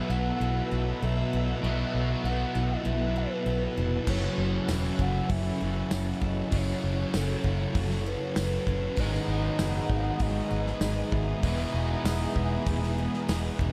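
A breathy, gliding sine lead opens this blissful, wistful shoegaze and dream pop excerpt, carrying the melody with vibrato and portamento through chorus and a diffuse ambient delay over sustained string-machine cello chords. From the start, a shimmering twelve-string acoustic guitar picks arpeggios in the background, while a bright, double-tracked stack guitar, a dark fuzz guitar and a twangy, clean electric guitar with reverse reverb stack up their riffs at a relaxed 98 BPM in a straight 4/4. A round, foam-muted electric bass sits up front, punchy and dark, entering at 0.1 seconds. At 4.1 seconds a loose indie drum kit with a tight kick and rolled-off top joins, as the chords move from B7sus4 to F#m7, and a jingly tambourine slips in behind it at 4.7 seconds. The whole mix is soaked in a huge ambient reverb, giving the layered guitars and mellow strings a hazy, dreamlike glow as the harmony drifts through G#m7 to Emaj7.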